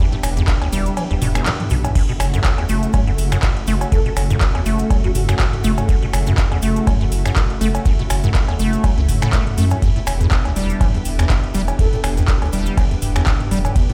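Acid house, hypnotic and trippy, cut from a longer piece: a squelchy, resonant square-wave acid bass riff with cassette-tape wear and delay runs over a deep, round analog bass and a thick, detuned pad pumping under the sidechain. An overdriven kick drops out from 1.0 to 2.0 seconds, and the booming analog drum machine, with metallic hats, cowbell, snaps and claps, plays a fill from 1.5 seconds. A very quiet, grainy cabasa sits beneath, and a breathy, warbling flute-like lead with 12-bit sampler grit surfaces briefly at 3.9 seconds and again near 11.8 seconds. The mix is played through a big system in a bare stone room.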